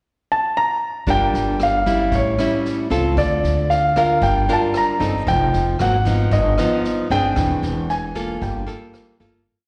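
A straight bossa nova brush groove in 4/4 sets this smooth, melancholic piece in motion from 1.1 s, with a vintage drum kit's punchy kick, rim click and snare under a woody, growly upright bass playing dotted root-and-fifth lines. A grand piano opens alone at 0.3 s with an intimate pickup, its action noise audible, then carries a motif-based melody in sentence phrases over a bright, full-bodied nylon-string guitar that is fingerpicked with thumb bass, syncopated plucked chords and finger squeak, and both piano and guitar carry a slapback echo. The sound is that of a live gig heard through a venue's PA in a lush hall, and the piece fades out from 7.4 s to its close.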